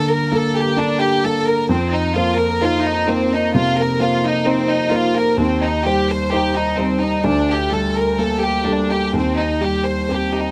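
A close, intimate chamber violin section carries the melody with soft-attack, sul tasto bowing and vibrato, lending this reflective, melancholic neoclassical fragment of a longer piece a hushed ensemble glow. Beneath it, a felt-muted upright piano plays a mellow accompaniment, its audible action noise adding natural detail as it reaches from deep bass up into the violins' register. Both parts sit up front in a dry, closely miked sound, moving freely in rubato over chords such as Gmadd9, F7sus4 and Cm/Eb.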